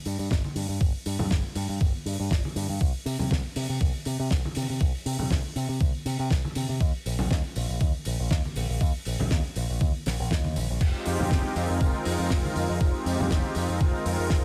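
A cosmic, sensual nu-disco groove at 120 BPM in F minor, with a lightly swung sixteenth feel, taken from a longer piece. An overdriven, thumpy electronic kick sits up front alongside a bright, picked electric bass run through an envelope filter with tube saturation and sidechain pumping, while a damped 70s kit adds a dry, fat snare, hi-hat and crash, and bright tambourine and congas sit distantly in the background. At 10.8 seconds a warbling, detuned vintage analog pad with slow attack enters on an Fm7 chord, sustained and treated with chorus, digital delay and sidechain pumping, in an otherwise fairly dry mix.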